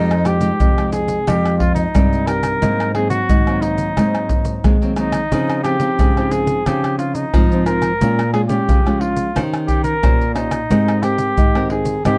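A straight 4/4 samba and choro pulse at 89 BPM comes from maracas, pandeiro, tamborim and a deep surdo, played with hard hands and placed close and up front from 0.1 seconds, in a lively, nostalgic mood tuned to A4 = 441 Hz. A woody nylon-string guitar with old strings fingerpicks classical-style accompaniment, while a second, darker and smaller-sounding nylon-string guitar fingerpicks the bass line through chords moving from Fm9 and Ab9 to Dbmaj9, Bbm7, Eb6 and Abmaj9. Over them a warm, vintage flugelhorn carries the solo melody in a pop style with vibrato, up front in a close, detailed recording with light reverb and faint mains hum, cut from a longer piece at 12.2 seconds.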